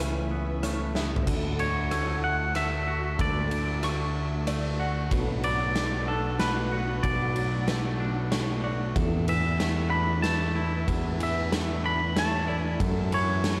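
A growling, overdriven electric bass sits up front in this euphoric, hopeful post-rock passage in 3/4, playing from the start alongside, in the background, fingered twangy guitar arpeggios, compressed twelve-string arpeggios with tremolo, and a clear, focused bowed string section holding sustained chords. A huge, punchy arena drum kit with bright cymbals joins at 0.6 seconds, and a picked twangy electric guitar melody with slapback echo enters at 1.6 seconds, all set in light small-room reverb with a vinyl crackle.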